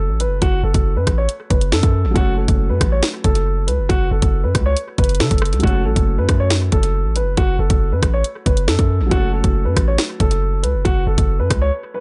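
A punchy, heavy 808-style bass with a fast attack and a noise layer anchors this menacing, cold drill excerpt at 138 BPM in a half-time feel and F# minor, joined at 0.2 s by an up-front electronic kit of hard-clipped kick, sharp snare, rim click and bright hats, while a dark baby grand piano carries the melody over a soft, felt-muted upright piano in the background, both filtered and run through analog delay in an echo-heavy, reverb-soaked mix that reaches a break at 11.7 s.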